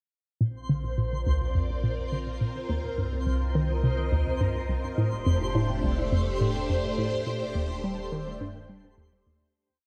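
Ambient, sequencer-driven space music in Bb major at 105 BPM, this short, cosmic and expansive piece is built around a hollow, bouncy square-wave pluck whose detuned, chorused five-step loop drifts against the 4/4 bar, sitting up front with 12-bit sampler grit, delay and a filter sweep. Beneath it, a round, wave-folded analog bass holds sustained roots, while a swirling, phased string machine fades in with bright sawtooth chords moving through Bbadd9, Cm, F and Eb. A sparkling granular texture adds a held high C5 shimmer from 0.7 seconds, and the echo-heavy mix fades out from 6.5 seconds.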